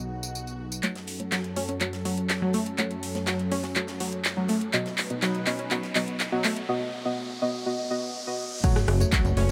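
A straight 4/4 pulse at 123 BPM drives this expansive progressive house passage in F# dorian, cut from a longer piece, where a lush, warbling unison pad holds sustained chords throughout and a punchy, funky analog bass plucks only at the opening and again from 8.9 s. From 0.8 s a build-up gathers as a round, detuned analog pluck arpeggiates and deep, nasal chord stabs with chorus and delay both undergo filter sweeps, riding on a layered, overdriven pop kit with metallic hats, handclaps and tambourine, a very quiet gated 80s kit with a fat snare, and a long riser from the sound effects. The chords move between F#m and B before an impact at 8.6 s brings in an up-front, overdriven electronic kick, all set in light digital ambience.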